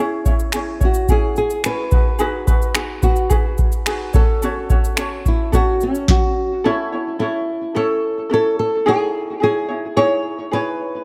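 Acoustic pop in a straight 4/4, this short cut from a longer piece feels reflective and tender. A mellow, light ukulele is fingerpicked up front as accompaniment throughout, while a fingerpicked nylon-string guitar carries the melody from 0.8 seconds, its small, warm tone touched with subtle chorus and analog delay. A booming analog drum machine with a deep kick, tonal snare, finger snaps and shaker sits up front with a tape-warm character, re-recorded in a small room, and drops out at 6.2 seconds. The harmony moves from C#m through G#m7 and F#m before the second section opens at 6.6 seconds on A and settles on C#madd9. Light reverb and a small room ambience give the intimate arrangement a close, gentle setting.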